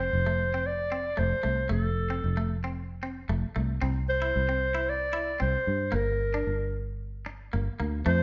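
A lightly swung 4/4 groove carries this carefree, danceable highlife guitar band piece, where an up-front, mellow clarinet sings a jazz-style solo melody with vibrato and scooped notes over twangy, picked clean electric guitar and a round, foam-muted fingered bass, with the band playing live together in one large studio room with moderate reverb.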